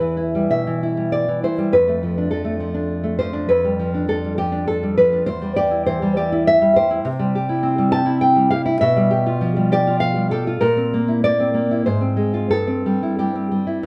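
A nylon-string classical guitar plays alone throughout this short excerpt of a romantic solo piece, sitting up front with a dark, thumb-plucked tone and fresh strings. The mood is sunny and warm, set in C major and a lilting 3/4, with a rubato feel that lets the tempo drift between 85 and 104 BPM. The guitar covers a range from E2 up to A5, and close, detailed microphones catch the intimacy of each note under a light reverb. The harmony moves from Em through Dm/F, G7/F and Em7 before settling on C, then passes through G7/B and takes a richer turn through C7/Bb and Fm/Ab to land on C/G at 12.5 seconds. The passage runs just under 14 seconds and is cut from a longer piece.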